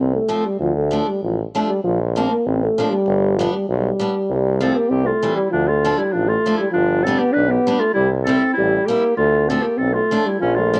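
A home cassette recording in a snug booth carries this jolly, festive alpine folk dance-band excerpt in 2/4, where a mellow, distant euphonium sings the melody up front over a clear tuba bass, a boxy picked steel-string acoustic guitar accompanies from 0.3 s, and a vintage-toned clarinet adds a second line from 4.6 s, with the euphonium, guitar and clarinet touched by tape grain and plate reverb.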